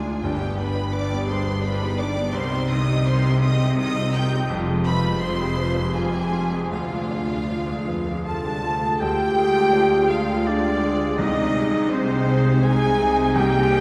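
Bittersweet and sorrowful, this cinematic, emotional film score for orchestra moves in a rubato 3/4 at roughly 76-87 BPM, cut from a longer piece and bathed in a cathedral reverb within a dark, warm production. A lush symphonic violin section carries the melody up to G6 with rich vibrato, while a focused chamber violin section sings a second line beneath it, and a smooth viola section and an intense cello section sit in the background with the distant, even double basses anchoring the low end. A clear, intimate baby grand piano accompanies throughout, its long sustain and audible action noise giving the texture a natural presence. Very quiet timpani with medium mallets on calf heads sound close and dry at the start and return from 11.2 s. At 8.2 s a classical-style solo oboe enters, joined by an airy silver flute with lifted highs and a mellow, tight French horn section holding sustained chords, which stands as the most prominent part. 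The harmony moves from G through Cm, Fmadd9 and Ddim before settling on Ab/C near the close.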